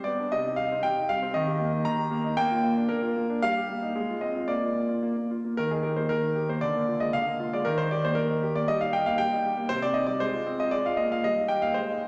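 Classical-period piano sonatina in a straight 2/4, cheerful and graceful, played on a single up-front concert grand with a warm, natural tone and deep bass, set in a lush recital hall reverb, with a second section beginning at 5.6 seconds in this short passage cut from a longer piece.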